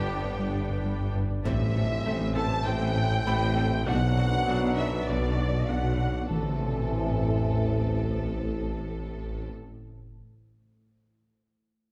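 A dark, vibrato-laden violin section opens this tense, relentless excerpt from a cinematic hybrid orchestral and electronic score, carrying a filtered melody in A dorian at a straight 99 BPM in 4/4, with a distant solo cello briefly adding a filtered, delayed line until 1.1 seconds. Beneath it, a second, more remote violin section and very quiet violas move smoothly over soft held chords from mellow French horns, roomy trombones and a warbling, lo-fi tape-like pad with chorus and a nostalgic, detuned haze. The low end is heavy and rich, built from a tuba, bowed cello and double bass sections, a deep sine sub bass and a round analog bass riff that drops out around the time a brilliant, short-sustained grand piano texture stops at 6.3 seconds. Electronic impacts and a sub drop enter at 1.5 seconds, with a filter sweep running through the middle stretch as the harmony moves from G through Am and Bm back to Am. 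A lush scoring-stage reverb wraps the orchestra in a big, cinematic space.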